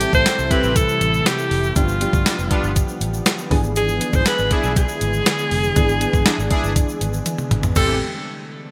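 1980s-style pop in A minor at 120 BPM, this short cut from a longer piece feels dramatic and urgent, moving through Am7, G7 and E7 before landing back on Am7 at 7.8 seconds. A bright, forceful alto saxophone carries the melody up front with vibrato and a smooth top, bathed in shimmer reverb, while a clean 12-bit drum machine drives the groove with a thumpy kick, medium-tuned snare, hi-hat, tambourine, crash and toms under gated reverb, closing with a fill from 7.3 to 7.8 seconds. Beneath them, a dark, foam-muted fingered electric bass gives round, punchy low notes, and soft electric-piano-like synth keys add mellow accompaniment colored by chorus and phaser. In the background, a glassy, warbling FM pad holds slow-blooming chords, analog synth brass enters at 0.3 seconds with fat, detuned stabs that sweep and shimmer, and a grainy tube shaker adds a faint acoustic sparkle. The whole mix sits in a moderate plate reverb with a bright digital sheen typical of the era.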